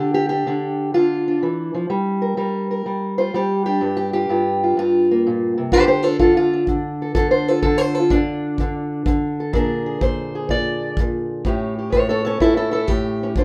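A moderate studio reverb gives this brooding, soulful acoustic country blues fragment a modest sense of room, with a dark, boxy parlour steel-string guitar placed up front carrying the melody in a swung 4/4 feel. The fingerpicked guitar plays alone until a punchy kick drum, played with brushes, enters at 5.7 s and stays through to the cut at 13.4 s. The harmony moves from Dm to Gm7, returns to Dm, then turns through Bb7 and A7.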